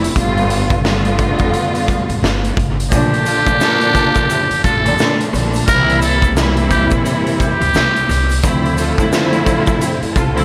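Boom-bap hip-hop at 87 BPM with a swung sixteenth feel, this moody, tough excerpt sits in an echo-heavy mix dusted with vinyl crackle and a small room's light reverb. A dark, lush string section carries the accompaniment from the start, bowed with vibrato and given a cassette-tape grit and analog delay, while a woody pizzicato upright bass thumps low on gut strings. The raw garage kit sits up front, its punchy kick, medium-tuned snare and hi-hat saturated and pumping in a bright stone room. At 2.9 seconds a trumpet with a metal mute takes the melody, buzzy, raspy and growling with a vintage edge and its own delay, playing until 8.4 seconds, as a grainy tube shaker slips in close and dry behind it. A second, softer string part adds floating, smooth-topped stabs in the background from 3.3 seconds, under chords moving from G9 through Bbmaj7 and C7 to Dm9.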